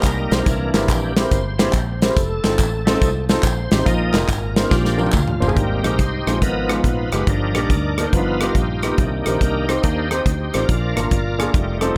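A bright, shouting tonewheel organ opens this uptempo gospel piece at 141 BPM in a swung 4/4, joined at once by a round, dark fingered electric bass, an up-front studio drum kit and a live-room layer of group handclaps and tambourine. The organ carries the lead with sustained chords over a slow rotary speaker, light overdrive and chorus vibrato, sounding full and jubilant above the band. A polished grand piano slips in at 0.3 seconds as accompaniment, present in the mix, while the foam-muted bass sits direct and amped underneath. The drums bring a punchy kick, medium-tuned snare, rim clicks, hi-hat and toms in a pumping room sound, and a drum fill from 4.7 to 5.6 seconds leads into a second section, around the point where the handclaps and tambourine drop out. The harmony moves from C7 and F7 through Bbsus4 to richer colours such as Abmaj7, Abm6 and G7alt before settling on Bb, giving this cut from a longer piece a reverent, celebratory lift in light reverb and small-room ambience.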